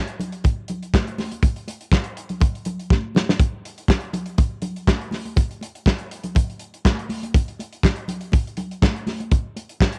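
A home cassette recording with little reverb captures this joyful, celebratory disco excerpt at 122 BPM in a straight 4/4. A saturated, gritty soul drum kit sits up front with a tight kick, medium-tuned snare, hi-hat, handclaps and a rolled-off top, its pumping room giving the groove a lift and a drum fill breaking through from 2.9 to 3.4 seconds. Behind it, high-tuned congas with thick skins and soft hands add close, intimate percussion throughout.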